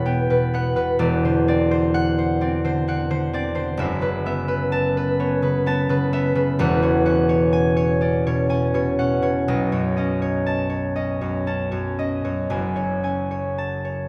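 A solo concert harp, fingerpicked and ringing, sits up front in this short classical fragment cut from a longer piece, sounding from the very start to its close at 14.1 seconds. The mood is mysterious and wistful, moving in a rubato three-four at roughly 56-65 BPM in F# minor. Its range spans from a deep E1 up to A5, and the acoustic tone carries a warm glow. Rich, colored harmonies pass from Emadd9 and D9/E through F#m7, E69 and B9 before settling on F#madd9 at 12.5 seconds. A wet recital hall reverb surrounds the instrument, giving it the lingering resonance of a church or concert hall.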